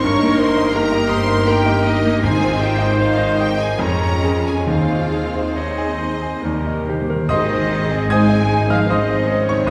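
The clear baby grand piano stands out most, carrying the melody with an intimate, natural tone, short sustain and audible action noise, alongside a bright, focused violin section that also plays melody with vibrato. This is a lyrical, passionate romantic movement for piano and orchestra in a flowing triple metre, played with rubato and cut from a longer piece. Beneath them, a very quiet second violin section, an airy silver flute and a background clarinet trace second lines, while an intense, very quiet viola section and a dark, distant bassoon fill in the accompaniment. A mellow French horn section holds soft sustained chords, a clear trumpet with a smooth top adds background stabs until 7.0 s, and focused cellos and double basses anchor the bass. Timpani struck with hard mallets enter at 2.2 s and play an articulate fill just before the music turns to a new section at 7.3 s, settling on a home chord. 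The whole ensemble sits in a wet concert hall reverb that lends it a lush, spacious glow.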